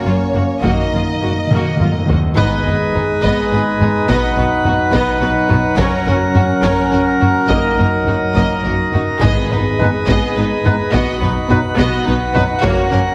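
Heavy-stick taiko drive this dark, dramatic epic orchestral film-score excerpt in G# minor at 70 BPM in 6/8. Lush, vibrato-laden violins carry the melody over a second violin line, smooth violas, distant double basses, very quiet expressive cellos and shadowy sustained French horn chords. A timpani fill arrives at 0.6 seconds, and the timpani returns at 9.2 seconds. At 2.4 seconds a full chamber organ with a distinct chiff takes up sustained chords, while a soft-attack solo trumpet adds stabs, all set in a wet recital-hall reverb with a heavily compressed, radio-like sound.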